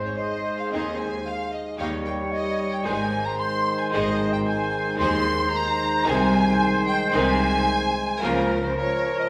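This spirited, cheerful classical-period movement for symphony orchestra opens at once with its wind and string body, a rich chamber violin section carrying the melody at 112 BPM in 4/4 with a flexible, rubato feel, settling into Ab major from 3.9 s. Around the violins, a clear, distant oboe and an airy, hollow concert flute trace second lines, while a dark bassoon with a soft attack adds accompaniment in the background. A dark, roomy French horn section holds sustained chords, and a mellow trumpet adds stabs from further back. From 0.7 s a second violin section and a focused viola section join in the background, smooth and bowed with vibrato, while a clear double bass section and a cello section anchor the bass until 8.7 s. The harmony moves from Ab through Eb7 and back, touching Ab/C before closing on Bbm/Db, all heard in a reverberant recital hall in this brief extract from a longer piece.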